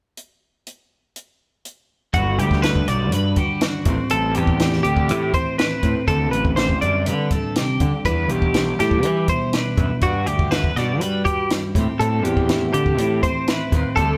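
Twangy, compressed twelve-string electric guitars, one carrying the accompaniment with a warbly pitch drift and the other playing vibrato-tinged arpeggios up high, enter at 2.1 seconds together with a growly, fuzz-overdriven picked bass over a compact cocktail drum kit with a high-tuned snare and punchy kick that plays alone from 0.2 seconds. This bright, intricate math rock and midwest emo excerpt at 122 BPM in G major cycles through Gmaj7, Am7, D7sus4 and Em7 and sounds like a band playing live in a stone room with moderate reverb.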